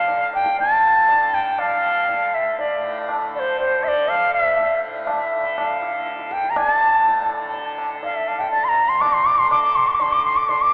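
A straight 4/4 pulse at 121 BPM that gradually speeds up carries this solemn, longing Hindustani classical fragment in raga darbari on D, where a pure, reedy bamboo bansuri with tongued notes and vibrato sings the melody up front between C5 and D6, a softly plucked, buzzing tanpura shimmers low beneath it as a drone, and high-tuned tabla with a short ring enters at 0.1 s, the whole heard through a long cathedral-like reverb and a thin telephone-like tone.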